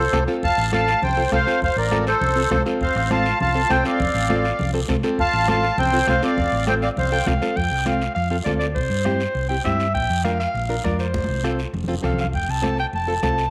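Heard through a moderate spring reverb, this festive, joyful cumbia excerpt in F major moves at a straight 202 BPM: a sweet, reedy, vintage-toned accordion with light tremolo tuning leads up front until 7.3 seconds, while a fingerpicked classical nylon-string guitar, a dark, round hollow-body electric bass, a close, raspy, dry guiro, and soft-handed congas and a soft-beater bombo in the background drive the groove, and a breathy, jazz-style clarinet with light vibrato and scooped notes enters at 2.8 seconds before taking a bright solo from 7.6 seconds over a drum fill and chords moving through F, C and Bb.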